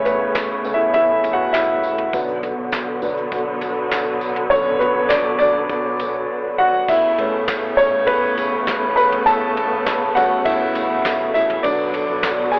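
Piano-driven pop in A major at 101 BPM in a straight 4/4, this short cut from a longer piece feels warm and uplifting. An intimate concert grand sits up front, its audible action noise and deep bass giving a natural, close presence as it carries both the accompaniment and the solo lines across the whole clip. Beneath it, a dark studio string section holds lush, woody, bowed chords with vibrato and a smooth top, while a round, punchy fingered electric bass stays in the background. A soft brush kit with a punchy kick, medium-tuned snare, hi-hat, ride, crash, toms and handclaps enters at 0.1 seconds alongside a jingly, compressed and saturated tambourine. The harmony moves between Aadd9 and Bm, with a second section starting at 6.9 seconds, and the piano, strings and drums carry a cassette-tape character inside a homemade, telephone-like sound with moderate spring reverb.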